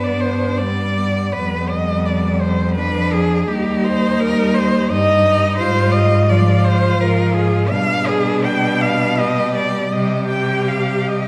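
Elegiac and solemn, this brief classical excerpt for cello ensemble unfolds in a lyrical triple metre with uneven, rubato beats. Four bowed cellos, each a single player with vibrato, play throughout the 11.3 seconds. The melody cello sits up front in a high register, its soft attack and portamento giving the line an expressive, singing quality, while the bass cello shares that same soft-attacked, sliding, expressive character from the low end. Between them, a focused cello with a smooth top carries a second line, and a close, even-toned cello supplies the accompaniment. The harmony moves from G through G7/F, Eb6, Fm/Ab and G/B before settling on a C5 chord, all bathed in the reverberation of a recital hall.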